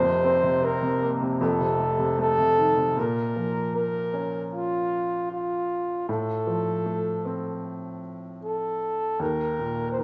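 Heartbroken and emotional, this pop piece moves at a slow 77 BPM in straight 4/4, set in B-flat harmonic minor. A breathy flugelhorn carries the melody from start to finish, its mellow, whispered tone and soft attack captured close and intimate, with a jazz-tinged solo voice sitting up front. Beneath it, a baby grand piano supplies the accompaniment, its clear, polished sound reaching down into a deep bass register while staying present in the mix. The harmony opens on suspended and dominant F chords before settling onto B-flat minor at 3.0 seconds, then shifting to F over A at 6.1 seconds and an open E-flat chord at 9.2 seconds. Light studio reverb and studio ambience give this short cut from a longer piece the rough, unvarnished feel of a home demo.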